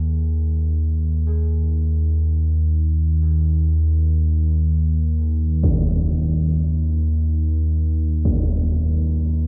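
Ominous and desolate, this short dark ambient drone, cut from a longer piece, drifts in free time around a single suspended harmony. A deep, rumbling drone sits up front for the full 9.5 seconds, its nasal, detuned tone carrying a ring-modulated edge, a slow attack, long release and its own built-in reverb. Far in the background, gamelan-type bossed gongs trace arpeggios with a metallic, bronze, beating ring treated with tape echo, falling silent at 3.2 seconds. A huge, bright impact strikes at 5.6 seconds, muffled by a low-pass filter and hanging on until 8.5 seconds. The whole mix is drenched in a wet echo chamber reverb, leaving a cavernous, echo-heavy sense of space.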